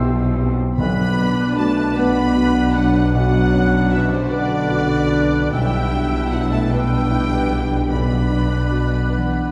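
The moving, longing excerpt from a cinematic film score opens with piano, harp, low strings and woodwinds. At 0.8 seconds a mellow French horn section enters with sustained chords, alongside a smooth, bowed violin section with vibrato that sings the melody, while a second, more focused and distant violin section adds a second line. The music drifts in a slow, rubato 6/8 at 51 BPM in B phrygian, opening on C over B before settling on B minor, passing to E minor seventh over B and returning to B minor. Beneath, a lush double bass section holds a low B and an even cello section sits just above, while viola strings and a polished baby grand piano add accompaniment and a very quiet, ringing concert harp spins fingerpicked arpeggios. Woodwind lines float at the edges: an airy silver flute high above, a soft-attack clarinet in the middle and a roomy oboe far in the background. Timpani struck with hard mallets on calf heads sound a low B at 0.8 seconds and again at 7.9 seconds. 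A wet concert hall reverb sets the whole orchestra further back in the room, giving the ensemble a spacious, cinematic glow.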